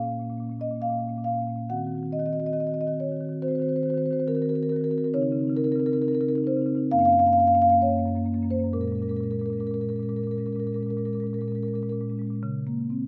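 A rubato pulse hovering around 64-70 BPM in 4/4 gives this contemporary classical piece for solo marimba a flowing, reflective mood in Bb minor, tuned to A4 = 438 Hz. Played with soft mallets across a range from Gb2 to Gb5, the marimba sounds woody, round and mellow, sitting up front with a mid-forward presence, captured by close, detailed microphones in light reverb. The harmony moves from Bbm through Ebm6, Dbsus2 and Gbmaj7 to Bbm7, arriving on Db5 at 12.4 seconds in this short passage cut from a longer work.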